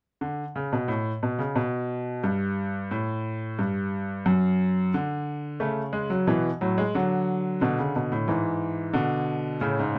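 Lively and elegant, this short baroque-style classical fugue excerpt for solo grand piano sets a clear, intimate baby grand close up front in the low register, its natural tone carrying long sustain and audible action noise, while the harmony moves through A/C#, D and E7/G# in a dark studio space with reverb.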